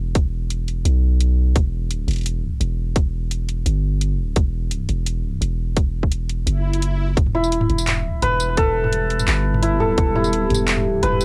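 A half-time drum and bass groove at 171 BPM in E minor sits on a tight, overdriven electronic kick and a layered kit of handclaps, bright hats, tambourine and toms, both carrying cassette-tape grit, while a deep, mellow 808-style sine bass holds long decaying notes up front for a heavy, cinematic mood. An electronic swell sounds at 6.6 seconds, after which a shimmering hammered santur enters at 7.3 seconds with ringing arpeggios coloured by 12-bit sampler crunch and analog delay. A dark, detuned sawtooth pad joins in the background at 8.4 seconds, chorused and carrying sidechain pumping, in this short cut from a longer piece with a light-reverb, home-cassette sound.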